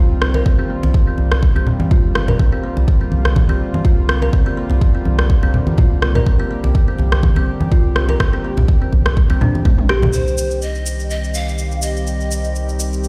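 A lightly swung afro house groove, hypnotic and driving, pairs a deep, up-front electronic kick and a layered deep house kit of rim clicks and toms with close acoustic congas. Under them sit a round, dark analog bass, a smooth chorused pad and a woody, hollow kalimba, whose thumbnail-plucked arpeggios carry a filter sweep and tape echo, and all three pump with sidechain. After a drum fill at 9.7 seconds, a breathy bamboo pan flute with chiff and vibrato and a grainy cabasa enter over the sustaining pad and bass at 10.1 seconds, the whole excerpt ringing through the stone reverb of a bare room on a big sound system.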